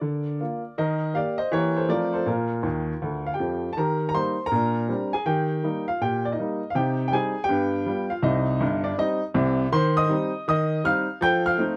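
Stride piano jazz, swinging and exuberant, played by a solo upright piano across this short cut from a longer piece. The piano sounds clear and woody, with a natural, up-front presence and long sustain, captured by close, detailed microphones in light reverb. A fill at 2.6 seconds leads into a shift toward E-flat at 3.8 seconds, where the harmony darkens into minor chords before settling on F7.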